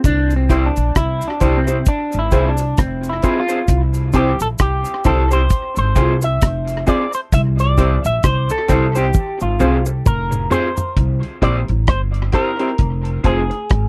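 A woody, thumpy pizzicato upright bass, a dry, tight-kicked reggae drum kit and a close cabasa open this laid-back, uplifting roots reggae excerpt, cut from a longer piece, as a bright, twangy envelope-filtered electric guitar takes a clean solo with tape echo, joined by a slightly broken-up, lo-fi guitar through a small old amp and a muted, detuned sawtooth dub chord stab with chorus and a filter sweep sitting in the background, over a C to Fm sway, with a drum fill from 9.1 to 11.0 seconds and the cabasa stopping at 10.9 seconds, all in a dry, close 1970s-style studio sound.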